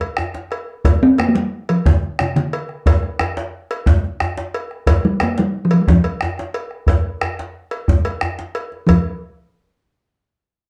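A 12/8 pulse at 120 dotted-quarter beats per minute drives this festive, earthy West African drum ensemble, cut from a longer piece. A metallic cowbell opens the groove, the round bombo and a medium-tuned djembe with metal rattles and a vintage, band-limited tone join at 0.2 seconds, and the talking drum enters at 1.0 seconds to carry the melody between C3 and C4 with a short ring. The bombo, djembe and talking drum sit up front in a dark production with moderate studio reverb.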